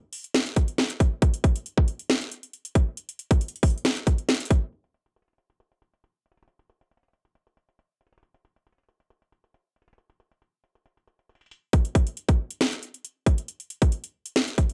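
Hip hop in a half-time trap feel, melancholic and menacing, carried entirely by an electronic trap drum kit up front with a hard-clipped kick, sharp snare and metallic hats, overdriven and re-recorded in a small room for a dry, gritty, low-passed sound, with a filter sweep running from 4.7 to 11.7 seconds in this cut from a longer piece.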